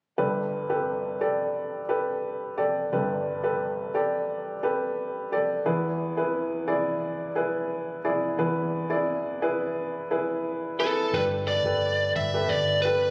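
A woody, polished upright piano opens this dramatic, driving pop excerpt at 88 BPM, moving from Gadd9 to E before a biting, overdriven lead guitar takes the melody at 10.8 s and a dark, round, foam-muted electric bass joins at 11.1 s as the harmony returns to Gadd9, the whole captured on a phone in a club-like room with a moderate plate reverb.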